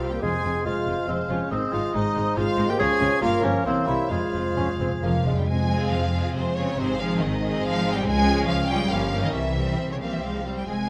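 An up-front, soft-attacked clarinet carries a second line for the first 5.2 seconds of this fast, stormy F minor excerpt from a romantic orchestral movement in 3/4 at 139 BPM, played with rubato, alongside a mellow bassoon, and is soon joined by a distant cor anglais and an airy, hollow flute section. Above them a lush violin section sings the restless melody with vibrato while a focused chamber violin section adds another line, and background violas, rich cellos and double basses supply accompaniment and bass beneath tight, close-miked French horn chords. Timpani struck with hard mallets sit in the background, punctuating the opening, a fill at 4.1 seconds and a return at 9.3 seconds, inside a moderate scoring-stage reverb.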